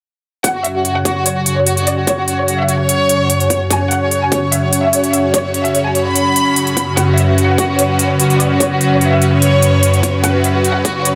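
A bright, detuned supersaw pad sits up front in this heavy, menacing wobble dubstep excerpt, holding lush sustained chords through a phaser with a slow attack, a moving notch and a sidechain pump that ties it to the beat. From 0.4 s a rich studio violin section carries the melody close and up front, its bowed ensemble tone smooth and even with vibrato, trailing a dub echo. Underneath, an overdriven electronic kick lands punchy in a half-time feel, layered and re-recorded in a small room with high-pass filtering on both the drum and its room sound. Crisp, overdriven electronic hi-hats add their own small-room reverb, and a light reverb surrounds the mix. The pad lingers until 11.2 s, closing this single section cut from a longer piece.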